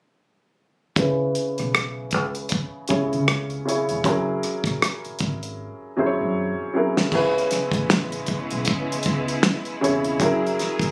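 A swung sixteenth-note feel at 78 BPM in 4/4 sets a sultry, soulful neo-soul groove in this short R&B passage taken from a longer piece. A damped 70s drum kit sits up front with a fat snare, tight kick, rim click, hi-hat, crash and dark cymbals, playing a fill from 5.6 to 7.1 seconds. Underneath, a deep dub fingered electric bass gives a round, punchy, foam-muted low end, while a woody, polished upright piano carries the accompaniment over C#m7 and F#9 chords, with a low-pass filter sweep shaping it through the opening stretch. At 7.1 seconds a lush studio string section enters with smooth, bowed sustained chords and vibrato, lifting the second half as the same two chords return. The sound has a light reverb and the casual ambience of a phone capturing a studio room.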